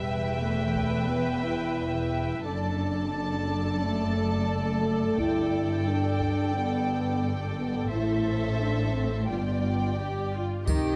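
Relentless and heroic, this epic orchestral film-score excerpt moves at 88 BPM in 4/4, with lush, vibrato-rich violins carrying the melody over a second violin line, focused violas, a soft-attacked cello section in the background and woody double basses, while a dark, present French horn section holds sustained chords through Em, D/F#, Gadd9, Am and G7, heavy-stick taiko hits land at 0.8 and 5.2 seconds, and a clear trombone section and bright triangle join at 10.7 seconds, all captured with close, detailed microphones in a moderate scoring-stage reverb.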